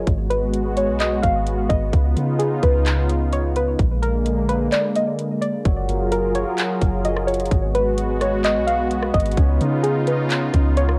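A gentle, rounded pluck carries the melody through chorus, a low-pass filter, tape wear and analog delay, floating over a smooth, detuned sawtooth pad that pumps softly against the beat in this blissful, dreamy cloud-rap hip hop excerpt with a half-time feel. A deep, sine-like 808 bass and an up-front trap kit with a hard-clipped kick, metallic hats, claps and rim clicks drive the groove, with the kick dropping out from 4.7 to 5.7 seconds. At 5.7 seconds a thumb-plucked concert harp joins in the background with ringing arpeggios, all set in light reverb with the hazy character of a home cassette recording.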